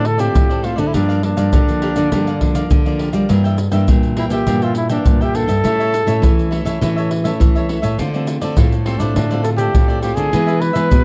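A mellow, breathy trumpet leads this lively, nostalgic samba-and-choro fragment, its close-miked jazz phrasing full of vibrato and scooped notes. A crisp, picked cavaquinho and a fingerpicked classical nylon-string guitar fill in the harmony over chords such as Dm7, Gm7 and Em7b5/G, while a second nylon-string guitar with fresh strings and the odd finger squeak carries the bass from the background. Pandeiro, egg shaker and a tight surdo, played with soft hands, sit up front in a dry, close 1970s-style studio sound.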